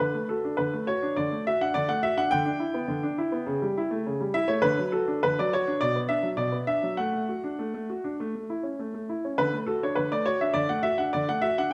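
Graceful and cheerful, this short passage of a classical-period piano sonatina moves in a straight, even four-beat metre. A single concert grand carries the whole performance, sitting up front in the sound with a clear tone and an open, deep bass that anchors its range from B2 up to G5. The harmony begins on D, then passes through Em7 and A7 over shifting bass notes before returning to D at 4.6 seconds, then moves through B minor and D over A to an A chord. The phrase comes home to D at 9.4 seconds, giving the passage a tidy, balanced shape. A moderate recital hall reverb surrounds the piano, and the clip, cut from a longer piece, runs to 11.7 seconds.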